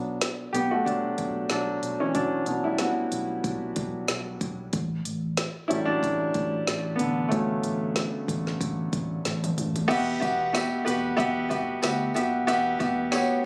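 Driving and bittersweet, this excerpt of piano-driven pop moves at 93 BPM in B minor with a light 16th-note swing, led by a clear, polished baby grand that takes a solo over Bm and F#m/A until a drum fill at 9.2 seconds carries it into an Emadd9 passage at 9.9 seconds. Beneath it, a dark, foam-muted vintage electric bass adds round, punchy low end, while an up-front deep house kit layers a deep kick, woody snare and smooth hats with crash and toms. A jingly tambourine joins distantly in the background for the closing seconds, and the phone-captured room sound carries light reverb, digital ambience and compression.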